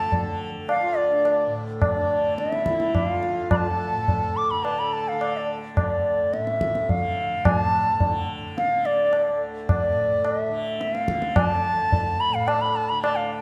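A moderate stage reverb gives this excerpt of Hindustani classical music a spacious, meditative and solemn air, moving at 107 BPM in 7/4 in raga Shivaranjani on D. A bright, reedy bansuri carries the melody up front with a pure, tongued tone and a slapback echo, while a low-tuned tabla with a short ring is also up front over a buzzing, shimmering tanpura drone. A breathing, close-miked harmonium adds a second line until it stops at 5.6 seconds.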